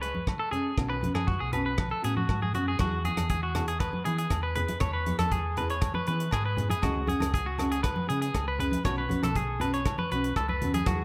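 A fingerpicked steel-string acoustic guitar, a clean electric guitar, a hollow-body electric bass and a tight funk drum kit open this joyful highlife guitar band piece together, with congas joining at 0.1 seconds and agogo bells at 0.3 seconds. The music is in E major at 119 BPM in a straight 4/4. Up front, the electric guitar plays bright, twangy, compressed arpeggios with a slapback echo, while the full-bodied acoustic dreadnought supplies fingerpicked accompaniment, with audible finger squeak. The bass is dark and round with an amped hollow-body tone, and the drum kit sounds natural in a small room, with hi-hat, rim click and a tight kick. Low-tuned, thick-skinned congas and ringing, dry agogo bells sit in the background. After an opening on C#5 and Bsus2, the harmony settles at 2.8 seconds into Eadd9, then moves through C#5 and Badd9, all under a light reverb in this excerpt from a longer piece.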